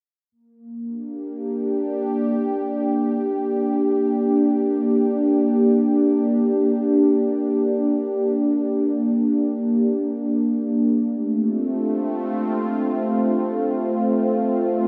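In free time, this expansive, cosmic ambient fragment in G minor, tuned to A4 = 439 Hz, holds a bright, up-front pad of detuned sawtooth and triangle tones with ring modulation, resonant filter swells and chorus, sustaining slow-attack, long-release chords from 0.3 to 14.9 seconds that move from Gm to F at 11.1 seconds, all inside a huge wet reverb with an 8.9-second tail and a dark production.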